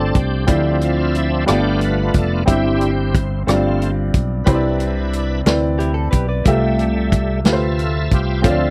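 Slow gospel in 6/8 at 60 BPM and C major, uplifting and hopeful, cut from a longer piece. A bright, shouting tonewheel organ takes the lead throughout with lightly overdriven sustained chords, slow rotary speaker and chorus vibrato, over a woody, vintage upright piano, a round, punchy fingered electric bass and a soul drum kit with tight kick, rim click, hi-hat and medium-tuned snare, all moving through Dm9, G7, C/G, G7sus4, Cmaj9 and Fmaj9/C. A clean, compressed direct electric guitar with analog chorus adds a brief picked second line from 5.8 to 6.6 seconds, and the whole has the dry, close sound of a 1970s studio.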